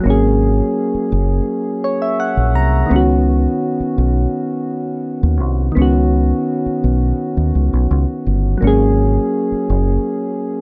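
Dry, with little reverb, this short cut from a longer contemporary R&B piece has a longing, moody air. It moves at 84 BPM in a straight 4/4, in G# minor, tuned slightly low at A4 = 438 Hz. Soft, electric-piano-like synth keys carry the accompaniment, their mellow, sine-like tone striking quickly and then decaying under a gentle chorus, with a brief fill from 1.5 to 2.9 seconds. Beneath them, a deep dub fingered electric bass sits up front, dark, round and amped, holding the low end from 0.1 seconds. The harmony rests on G#9sus4, shifts to C#9sus4 at 2.9 seconds, and returns to G#9sus4 near the end.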